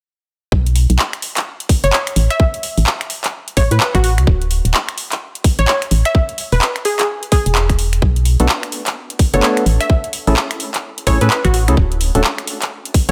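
Bouncy and soulful, this swung two-step UK garage excerpt rides on a hollow, dark organ-like FM bass, a tight, up-front electronic kick and a garage kit of finger snaps, handclaps and metallic hi-hats in studio reverb, while a crystalline, detuned wavetable pluck with chorus and digital delay enters at 1.8 seconds and a mellow percussive organ stab with lush chorus joins at 8.4 seconds.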